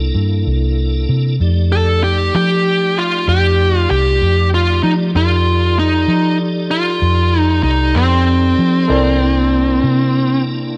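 A slow blues in 12/8 at 64 BPM, counted in dotted quarters, with a straight, swaggering and soulful feel. A muted, fingered electric bass sits up front from the start, round and punchy, while a tonewheel organ holds sustained chords beneath it, its piping, scooped tone colored by key click, chorus vibrato and a slow rotary speaker. At 1.7 seconds an overdriven lead guitar enters with a dark, smooth, picked melody, carrying the tune over the harmony, which has already moved from C13 to F13. Near the close, at 8.9 seconds, a woody upright piano slips in quietly in the background just as the chords return to C13. Light reverb gives the whole cut, taken from a longer piece, a gentle sense of room.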